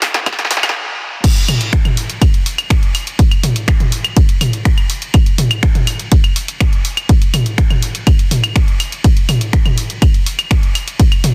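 A punchy analog drum machine opens this dark, hypnotic techno excerpt at 123 BPM with a drum fill across claves, finger snaps, toms, hi-hat and a soft-clipped snare, all thinned by high-pass filtering and re-recorded in a large room. A layered, tape-warm electronic kick joins up front at 0.3 seconds, and after a brief stop at 0.8 seconds the drop lands at 1.2 seconds, where the kick drives alongside ride and crash cymbals. The dense, heavily limited master keeps reverb to a minimum, so the straight 4/4 groove stays dry and close.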